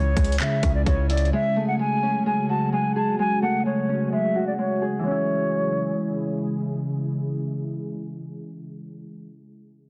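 Melancholic yet hard-hitting, this short cut from a longer hip hop and trap piece sits at 129 BPM in a half-time 4/4 feel in C# minor, moving from C#m to F#madd9 and back to C#m. A mellow silver concert flute carries the melody up front with an airy tone and expressive vibrato until 6.4 seconds, while a fingerpicked Celtic harp, also up front, rings out alongside as accompaniment. An ethereal pad of detuned sawtooth and triangle voices holds sustained chords with slow attack, long release, ensemble chorus and its own reverb. For just the opening moments, a punchy sine-based 808 bass with a noise layer and a trap drum kit of handclaps, metallic hi-hats and a hard-clipped kick hit hard, the overdriven drums stopping along with the bass at 1.3 seconds. The mix has light reverb and studio ambience, a filter sweep across the first 5.0 seconds, and a dense, heavily limited modern master with a low-pass filter.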